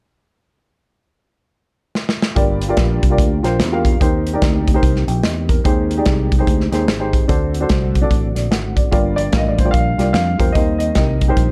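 A punchy, up-front studio drum kit drives this short uptempo gospel passage, its hi-hat, kick and medium-tuned snare sounding airy and polished, entering with a fill at 2.0 seconds. From 2.4 seconds a woody, slightly detuned upright piano supplies accompaniment while a fingered electric bass, direct and amped, holds down the low end. Behind them a soft, flute-like tonewheel organ sustains chords through a slow rotary speaker and chorus vibrato. The mood is solemn and soulful, the swung feel moving over chords such as Gm7, Eb6, Abmaj7 and D7. Near the close, at 9.2 seconds, a dark, intimate concert grand piano carries a brief melody with tape echo and audible action noise, all within a dry, dark and warm production.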